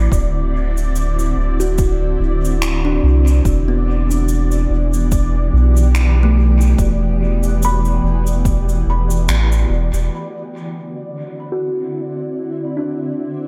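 A deep, round analog bass sits up front in this meditative, spacious ambient dub excerpt, with a swung feel and an overdriven electronic kick drum beneath it until the kick drops out at 8.6 seconds. A woody, ringing kalimba plays arpeggios through low-pass filtering and tape echo over a cloudy, blurred granular pad of sustained chords. A bubbling, detuned stepped-filter texture with chorus drifts in the background, and cabasa and finger snaps with a natural hall sound and dub echo fill the echo-heavy mix. After a band accent, the bass, cabasa and snaps stop at 10.1 seconds, and the kalimba moves through a filter sweep over the continuing pad and texture in the closing passage.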